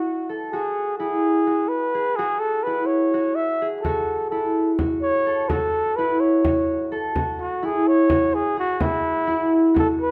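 A breathy, whispered flugelhorn carries an intimate, lightly vibrato-tinged melody up front over ringing, thumb-plucked harp arpeggios in this hypnotic, urgent chamber piece in 7/8, with a deep, saturated frame drum played with soft hands joining at 3.8 seconds, all set in a moderate recital-hall reverb.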